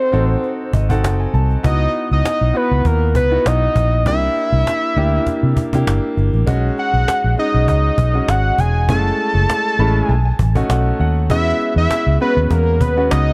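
This short cut from a longer piece has a dark, warm sound in a small room, with the bass pushed up front and a gently swung groove in four. It is polished 1980s jazz-funk pop with a nocturnal, slick mood. A fat, nasal analog lead carries the melody from the start, its sawtooth and square-wave tone thickened by a sub octave, a filter sweep, chorus and vibrato. Beneath it, a concert grand piano with deep, natural bass and a subtle chorus accompanies, adding fills at 0.4 seconds and again at 9.5 seconds. A vintage muted fingered electric bass, round, amped and punchy, joins at 0.1 seconds alongside a snappy cajon struck with hard hands. Rich extended chords such as G#7b9, C#m11 and C9 pass through the passage, coming to rest on E6.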